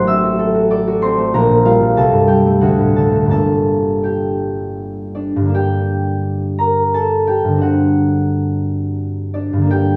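A mellow, thumb-plucked concert harp rings up front alone through this brief classical excerpt in G minor, its mysterious, wistful lines moving in a rubato 3/4 at 74-97 BPM across a range from G1 to F#6, settling on G minor at 3.3 seconds before a new section begins at 5.5 seconds, all bathed in a moderate scoring-stage reverb.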